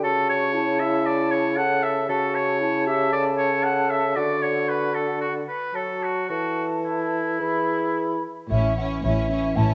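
This brief passage, cut from a quick classical-period movement for symphony orchestra, moves at roughly 108-118 BPM in A major with a spirited, graceful character and a flexible, rubato feel. For the first 8.2 seconds the woodwinds carry it alone: a clear, punchy oboe sits up front among the second lines, a hollow silver flute adds pure tone above, a distant clarinet murmurs in the background, and a mellow bassoon provides the accompaniment underneath. The flute keeps sounding until 9.7 seconds, bridging into the closing stretch as the harmony moves from A over C# through D toward a resolving A chord. At 8.5 seconds the strings and brass arrive together, with a focused chamber violin section taking the melody, a second violin line and rich violas filling the middle, dark French horns holding sustained chords, and cellos and double basses anchoring the bass. The whole passage rests in a moderate concert hall reverb that gives it a roomy, natural sense of space.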